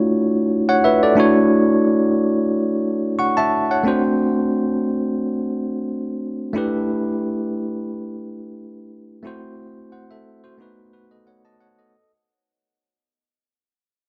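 Soul played on a single bell-like tine electric piano, heard alone in this short excerpt cut from a longer piece, with a warm, romantic mood and a gently swung sixteenth-note feel. The electric piano sounds bright, clean and direct, sitting up front in a light reverb with a digital ambience around it. Its harmony moves from Dmaj9 to D7, then through G69 and F#m7b5 before landing on B7, giving the passage a warm, romantic pull. After a brief opening phrase, a longer section begins at 1.2 seconds and fades out until 11.9 seconds. The part spans a range from the middle register up into the high upper keys, keeping the focus on the instrument's chiming tone.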